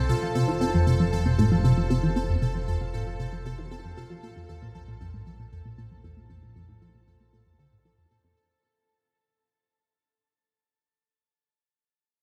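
Expansive and mysterious, this ambient excerpt moves at 116 BPM in a straight 4/4, shifting from F to Bbadd9 under light reverb as the whole passage fades out. An up-front, squelchy, resonant blip pluck carries the riff through phaser, lush chorus, cassette tape and tape echo. A fat analog bass sits beneath it, while a bright, pulsing gated texture with chorus and reverb hovers high. A fingerpicked, ringing Celtic harp plays arpeggios with tape echo and continues alone after the other parts stop around 8.4 seconds, until 11.0 seconds.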